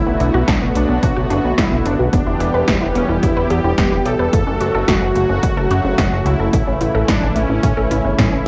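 A straight 4/4 pulse at 109 BPM drives this nocturnal, moody synthwave excerpt in B minor: a punchy, overdriven electronic kick enters at 0.5 seconds, just after 80s-style pad drums with a gated snare and metallic hi-hats arrive at 0.2 seconds, both carrying cassette grit. A glossy, nasal chorused synth bass with tube saturation sits beneath a thick, bright unison pad with a sidechain pump, while a wave-folded unison pluck traces arpeggios through analog delay in the background, moving over Bm7, Em, F#m and A. On top, a smooth, soft supersaw lead sings through tape echo and plate reverb, and the whole piece carries the hazy character of a home cassette recording in a wet studio reverb.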